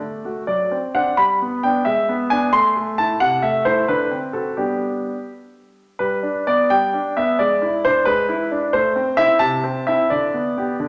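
Set in 6/8 at 87 BPM with a rubato feel, this elegant, cheerful classical-period piano sonatina in G major has a solo concert grand, clear and smooth with a deep bass, vintage and up front, playing from 0.0 to 10.9 s across a range of C3 to C6 through chords such as D7/F#, E7/G#, Am and G, its two short sections opening into a wet recital-hall reverb in this fragment cut from a longer piece.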